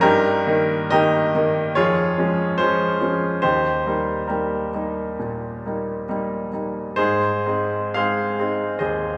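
In a flexible, rubato four-beat metre, this brief 9.2-second passage from a longer romantic character piece for solo piano unfolds with a lyrical, hopeful mood. A single baby grand carries everything, its tone clear and intimate, placed up front with audible action noise that lends a natural, close presence to the playing. The writing spans from deep Eb2 in the bass up to F5, moving through a gentle harmonic path from Eb/G to Db/F, settling on Eb at 3.4 s and arriving at Ab at 7.0 s. Around the instrument, a wet recital hall reverb with a 1.8-second decay blooms in the church-like space, while the top end of the recording is softly rolled off.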